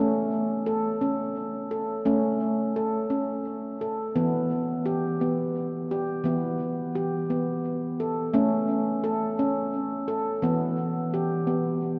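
A lone handpan carries this gentle, hypnotic piece of meditative world music, its nitrided steel tones ringing out in 3/4 at 86 BPM in E dorian. Sharp finger strokes sound close and up front, yet the instrument carries a vintage, band-limited character that softens its edges. A diffuse ambient delay trails each note, and the whole performance sits inside a vast, echoing space with a long cathedral reverb that lets the tones hang in the air. The harmony sways between A and Em, returning to A at 8.3 seconds and settling back on Em at 10.4 seconds. Heard as a short cut from a longer piece, the 12 seconds feel spacious and trance-like, suited to stillness and reflection.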